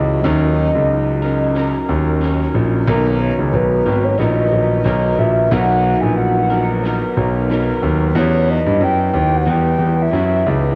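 A clear grand piano carries the bass line up front, its open, long-sustaining low notes given a touch of tube saturation, anchoring this dreamy, nostalgic indie pop excerpt in B major at 91 BPM with a light 16th-note swing. Above it, a soft octave-layered synth lead sings the melody with a round, mellow tone, treated with phaser, lush chorus, tape echo and a cassette-tape haze. An electric guitar through a small old amp adds slightly broken-up, lo-fi accompaniment colored by analog chorus and vibrato, while very quiet analog keys with a detuned, decaying character sit further back. The harmony moves from D#m7 to Bmaj7 and then to Emadd9, and at 9.1 s an ethereal, airy pad slips in with a faint sustained chord. A moderate hall reverb and the worn feel of a home cassette recording wrap the whole fragment in a hazy, wistful glow.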